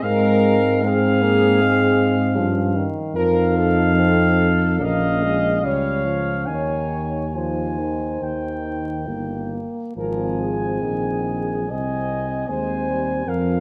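Classical brass-band music with a hymn-like, tender and serene mood, moving in a rubato 4/4 at around 66-78 BPM in Ab major. A warm, distant cornet carries the melody over a mellow French horn section with light vibrato on the second line, while a clear, soft-attacked euphonium and a dark euphonium set in the background supply accompaniment, and an up-front, mellow tuba anchors the bass. The harmony passes from Fm/Ab through F7 and Bbm to Eb before settling on Ab, all heard within a moderate scoring-stage reverb and a layer of vinyl crackle in this 13.6-second cut from a longer piece.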